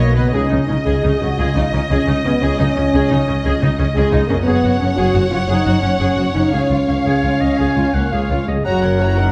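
This cinematic, heroic adventure film score moves at 116 BPM in a straight 12/8 in Db mixolydian, and its mood is triumphant and adventurous. A clear, intense violin section carries the melody from a slight distance, while a second, richer violin section holds a supporting line in the background and a focused viola section fills in the accompaniment, all bowed with lush vibrato. The French horn section is the most prominent voice, a tight, classical-style section holding sustained chords. Underneath, a smooth, even cello section and an expressive, somewhat distant double bass section share the bass. A very quiet, ringing concert harp plays fingerpicked arpeggios from 0.2 s, and a clear oboe with light vibrato adds a second line at 7.1 s before a roomy clarinet joins in the background at 8.6 s. The chords move from Dbsus2 to Gbsus2, then to Db and F#, all set in a wet recital-hall reverb in this short clip from a longer piece.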